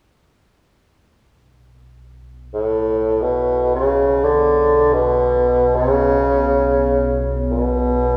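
Bathed in a lush hall reverb with a 2.8-second decay, this spacious, meditative world excerpt in free time and B minor opens on a deep, ominous, detuned and wave-folded drone that rumbles in at 2.4 s with its own reverb, before a warm solo bassoon enters at 2.5 s, playing a classical-style melody with light vibrato, a soft attack and tape echo.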